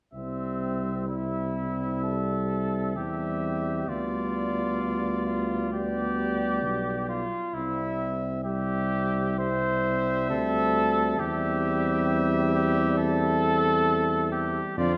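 A clear, up-front flugelhorn carries the second line beneath a clear trumpet melody in this stately classical brass quintet excerpt, moving at a rubato 66 BPM in C major through C, G7/D and C/E harmonies. A mellow, close-miked French horn and a distant, roomy trombone in the background fill out the accompaniment, while a mellow tuba sits up front on the bass line, with light vibrato in the flugelhorn, horn, trombone and tuba. The whole ensemble plays from 0.1 s through to about 15 s, where the excerpt is cut, bathed in a wet scoring-stage reverb with a softened, dark top end.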